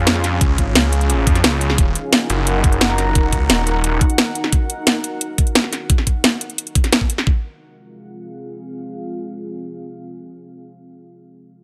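A straight 175 BPM drum and bass beat drives this excerpt of dark technical drum and bass in F phrygian, with a knocking electronic kick and a kit of cracking snare and metallic, tape-tinged hats sitting up front with a small-room character through a mechanical, aggressive drop that runs to 7.3 seconds. A snarling, growling distorted saw bass with tube saturation and a moving notch snaps in for the first 4.0 seconds, while a soft, breathy pad hovers in the background with chorus and sidechain pumping. Beneath it all, a deep, moody ambient pad of detuned saws and a sub octave sustains chords from Db through Ebm to Fm, carrying on with its own pumping and built-in reverb until 10.6 seconds.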